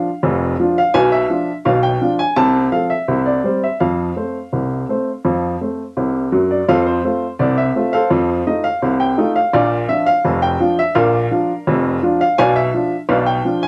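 In a straight two-beat metre, this playful, lively ragtime fragment cut from a longer piece features a solo upright piano, woody with short sustain and placed up front, that plays the same section twice through chords such as Bb, B diminished, F and F7, all captured as a cassette home recording in a booth with moderate ambience.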